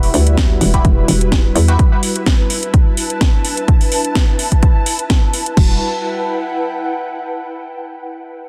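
Bass house at 127 BPM in E minor with a bouncy, aggressive swing, where a punchy, tape-warm kick enters up front at 0.4 s beneath a house kit of cracking snare, metallic hats and crash, as a hollow, knocking FM bass with tube saturation drives the low end, a nasal, band-passed sawtooth chord stab with phaser and tape echo flashes by briefly, a detuned, filter-swept resonant pad pumps softly on an Emadd9 chord in the background, and an ethereal, airy pad with built-in reverb carries on alone until 7.4 s, the whole framed by a dense, heavily limited modern master.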